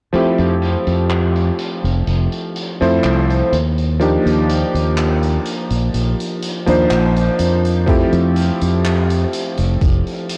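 A clear, clangy electric grand piano drenched in lush chorus, 12-bit sampler grit and tape echo opens this woozy, nostalgic vaporwave fragment at 62 BPM in F major alongside a dark, round, punchy fingered electric bass and a warm, mid-forward big-room rock kit of handclaps and low-pass-filtered hi-hat with a rolled-off top, drifting from Fmaj9 to Ebmaj9 and back before a thumpy, overdriven electronic kick drum joins at 7.9 s, all under a worn, warbling cassette-tape pitch drift and light reverb.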